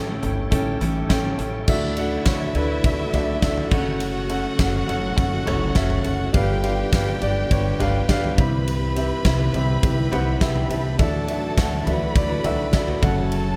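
Uplifting and hopeful, this piano-driven pop excerpt sets an intimate, up-front grand piano with audible action noise over a woody, thumpy pizzicato upright bass and a big-room drum kit with a punchy kick and a fat snare, while a very quiet, lightly overdriven tonewheel organ holds sustained chords through a slow rotary speaker, a full-bodied picked steel-string acoustic guitar riff sits in the background at the start and returns at 11.0 s, a lush bowed violin section carries a smooth second line from 1.7 s, and the piano adds a fill at 10.1 s, framed by light reverb and small-room ambience.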